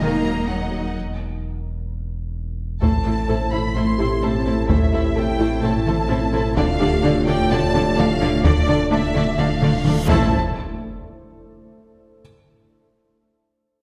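Drenched in a recital-hall reverb, this vast, tense cinematic excerpt of hybrid orchestral and electronic film score in A minor at 128 BPM sets a lush, vibrato-rich violin melody over a second violin line, expressive violas with portamento, smooth cellos, woody double basses, mellow French horns, quiet trombones, a glassy FM pad, a soft round pluck playing dark arpeggios, a deep sub bass with octave and a muted felt upright piano with audible action noise, before a taiko ensemble struck with hard sticks enters at 2.8 seconds and a huge, bright reverse cymbal and impact arrives at 9.6 seconds to close the passage.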